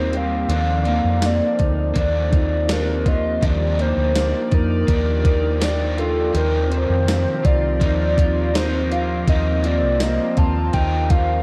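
A warbling, nostalgic square-and-sawtooth lead with vibrato carries the melody through this dreamy, ethereal dream pop excerpt at 82 BPM, soaked in chorus, delay and shimmer reverb over Bbmaj7 moving to Cm7 at 6.4 seconds. Up front, a gated 80s digital drum machine with a thumpy kick, an overdriven gated-reverb snare, hi-hat and tambourine sits beside a round, hollow-body fingered bass. A picked, overdriven semi-hollow guitar with harmonic tremolo and a slightly broken-up guitar playing arpeggios add dark, chorused shading, a swirling phased sawtooth pad hangs in the background, and a very quiet, mellow soft-mallet vibraphone enters at 1.5 seconds, the whole mix sitting in a lush hall with a warm, dim-toned production.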